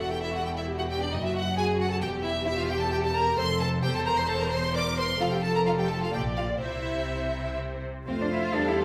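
A clear, intense first violin section sits up front, carrying the melody with bowed vibrato high above the ensemble in this quick, spirited and graceful classical-period movement for string orchestra in triple time, played with a rubato feel. Beneath it, a rich, expressive second violin section shapes a close-miked second line, while a smooth, even viola section fills in the accompaniment. The bass is shared by a distant, clear cello section and an intense double bass section with a smooth top, all parts playing together throughout the 8.8 seconds. The harmony opens in minor shades before turning through brighter chords and settling on F at 8.1 seconds. A recital-hall reverb lends the ensemble a spacious, church-like bloom, and the clip is cut from a longer piece.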